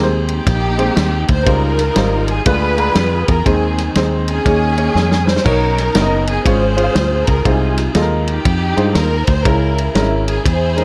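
Reverent yet jubilant, this short cut from a longer uptempo gospel piece moves at 120 BPM in 4/4 with a swung eighth-note feel in Ab major. A lush, bowed string section carries the melody up front, its ensemble sound expressive with vibrato, portamento and a smooth top. Beneath it, a clear concert grand piano supplies accompaniment with deep bass and short sustain, while a punchy, foam-muted fingered electric bass sits direct and prominent in the mix. The acoustic soul drum kit enters at 0.3 seconds, dry and mid-forward with a tight kick, medium-tuned snare, rolled-off top, ride and crash cymbals, and plays a fill at 5.0 seconds. Rich harmony colors the passage, moving from Abmaj9 through Dbmaj9#11, Ddim7 and Eb7sus4 to a surprising Bmaj9 before settling toward Ab6/C and a closing Dbm6, all framed by light studio reverb.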